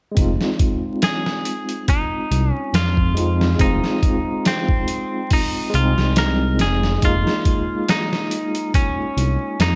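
An overdriven tine electric piano opens this smoky, cinematic trip hop excerpt at 0.1 s, its barky, gritty chords pulsing with a fast tremolo and softened by a low-pass filter as if played through a combo amp. A moment later a dark, detuned saw bass arrives up front, deep and rumbling with a beating unison tone, alongside a sampler-style drum kit whose thumpy kick, medium-tuned snare and hi-hat sound pitched down, muffled and compressed, tape-warm and re-recorded in a small room. The groove sits at an unhurried pace with a gentle swing on the sixteenths. At 1.0 s a semi-hollow electric guitar takes the melody, bright and clean with a scooped, hollow-body character, trailing tape echo behind its picked lines. The harmony rests on Fm7 before shifting to Db6/F at 7.0 s, while vinyl crackle and light reverb give the piece a dusty, late-night atmosphere.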